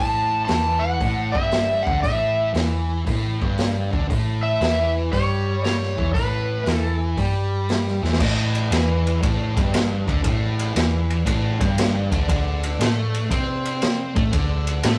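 Blues rock power trio with a southern rock edge at a swung 117 BPM, gritty and raunchy, where a bright overdriven slide guitar carries the melody until 7.0 seconds over a double-tracked fuzz guitar riff and a round, dark hollow-body bass, while a raw garage drum kit with dark cymbals, a punchy kick and a pumping room sound enters at 0.5 seconds and drops a fill at 7.9 seconds into the next section, all caught in a rough rehearsal-room recording with tube saturation and a small wet room reverb.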